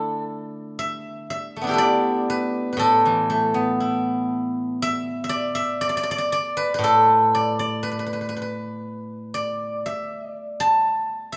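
A solo steel-string zither, played with fingerpicks, sounds up front with a silvery, ringing tone across a range from A2 to A5, opening this short fragment of a longer traditional Chinese piece. The music is elegant and serene, moving in a free rubato around 59 BPM in 2/4, set in the D zhi mode with tuning at A4 = 442 Hz. A moderate recital-hall reverb surrounds the acoustic instrument, lending the plucked strings a graceful sense of space.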